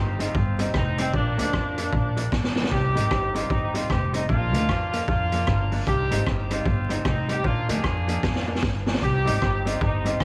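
Ska with an energetic, driving swing, this short cut from a longer piece puts a clear horn section up front carrying the melody with light vibrato, colored by tube saturation and tape echo, over woody pizzicato upright bass. A dark, clean hollow-body jazz guitar sits in the background with its own tape echo, while a raw garage drum kit, gritty with a high-tuned snare and boomy kick, also sits up front and adds fills at 2.3 and 8.2 seconds. Light small-room ambience and vinyl crackle give the recording an old-record feel.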